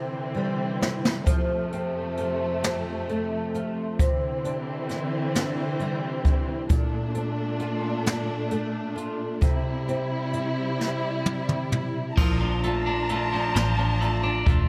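A double-tracked, fingerpicked flamenco guitar and a lush studio string section bowing sustained chords with vibrato and portamento open this tender, swaying six-eight pop ballad at 44 BPM, joined at 0.8 seconds by brushed jazz drums with dark cymbals and a boomy kick sitting up front, before a bright, clean twelve-string electric guitar with spring reverb and a dark, round, foam-muted electric bass enter at 12.2 seconds for a section opening on Bbmaj7.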